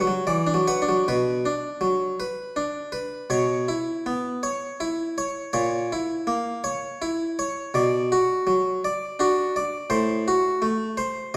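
In an unhurried triple metre at 82 BPM, the beats fall unevenly and the pulse breathes with rubato, giving this baroque-style suite movement a solemn, grave character in B minor. A single harpsichord carries the whole piece alone, its plucked, bright tone from one set of strings in the Italian style sitting up front, close-miked and full across a range from A2 to F#5. A brief opening section gives way at 1.1 seconds to a longer second section that runs to the end of this cut from a longer piece. The harmony moves from B minor through a suspended chord and a diminished chord on A#, returns to B minor, and arrives on a diminished chord over A near 9.9 seconds. Around the dry instrument, a moderate recital hall reverb adds space, while the overall production leans dark.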